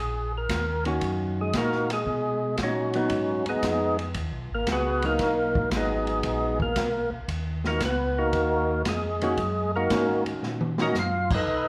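Soul jazz organ trio in Eb minor at 115 BPM with a swung 4/4 feel, smoky and bluesy, moving between Ebm7 and Abm7 in this brief cut from a longer piece. A fat, percussive tonewheel organ sits up front with an organ solo carrying the melody through slow rotary speaker and light overdrive, while a mellow, round second organ voice handles the bass line. A dark, boomy acoustic drum kit enters at 0.5 seconds and plays a fill around 10.4 seconds, a clean, compressed hollow-body archtop guitar adds picked accompaniment from 0.9 seconds, and the whole trio is heard from further back in a large studio room with moderate reverb.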